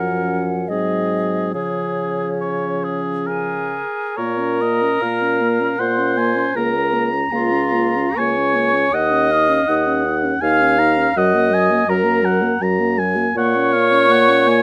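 This is a classical slow movement for wind quintet, tender and lyrical, in triple metre with a flexible, rubato feel. The hollow concert flute carries the melody high above the ensemble with tongued notes, while a punchy oboe weaves a second line beneath it, and both sing with vibrato. A clear clarinet and a dark French horn with light vibrato fill in the accompaniment, and a mellow bassoon, sitting present and up front, anchors the bass. All five instruments play throughout, and the harmony shifts into a more shadowed section at 4.2 s, moving through a searching minor seventh chord before settling again. The sound is close and detailed with light reverb, and the passage is cut from a longer piece.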